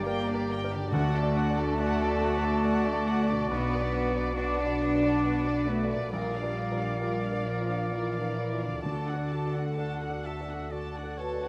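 Floating, sul tasto symphonic violins carry the melody in this moving, hopeful cinematic excerpt with a rubato three-beat feel, joined by a clear solo oboe, an airy, distant concert flute, a second intimate studio violin section, a soft-attacked clarinet, a background grand piano with audible action noise, dark, woody violas, mellow French horns holding sustained chords, a very quiet, ringing, thumb-plucked harp, rich cellos and pure double basses, with very quiet timpani sounding at 0.9 s and 8.8 s and a hollow alto flute entering at 11.2 s just before the cut, all in a moderate scoring-stage reverb.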